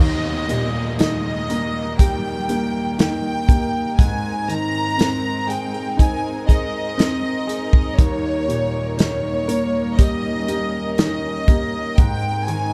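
A natural country drum kit sits up front in this emotional, tender pop ballad, its punchy kick, medium-tuned snare and hi-hat entering at 0.5 seconds with an acoustic, studio-room sound. A clear, polished baby grand piano carries the accompaniment from the start, while a bowed violin section sings the melody with light vibrato and an earthy, close tone. Behind them, a warm string section holds sustained chords with a soft, sul tasto attack. A full-bodied nylon-string guitar with fresh strings adds fingerpicked classical arpeggios through a tape echo. An electronic downlifter sits in the background until 8.0 seconds, and the harmony alternates between Eb and Abadd9, all within a small room ambience and a dark production, in a passage cut from a longer piece.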